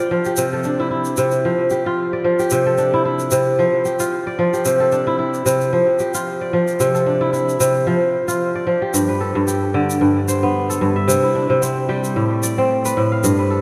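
West African traditional string music, flowing and warm, in which a mellow, ringing fingerpicked kora plays up-front arpeggios wrapped in diffuse ambient delay while a grainy egg shaker ticks quietly and close beneath it, the whole dreamy mix soaked in a lush hall reverb as swung chords rock between C and D minor over F before turning to G, back to C and on to A minor in this short excerpt cut from a longer piece.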